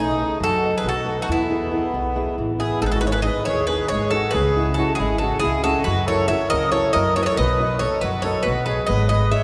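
From the first beat, a metallic, double-strung Greek bouzouki with some octave-doubled strings carries the melody up front, while a sweet, reedy accordion with light tremolo tuning plays a close, dry second line, a dark, fingerpicked flamenco guitar with audible finger squeak accompanies, and a thumpy, woody pizzicato upright bass anchors the low end, giving this energetic, bright Greek folk excerpt in 7/8 at 276 BPM (eighths) its drive through chords moving from B7 and E to G#m, C#m and F#7, set in a wet cathedral reverb with a 5.6 s decay, recorded in a church or concert hall.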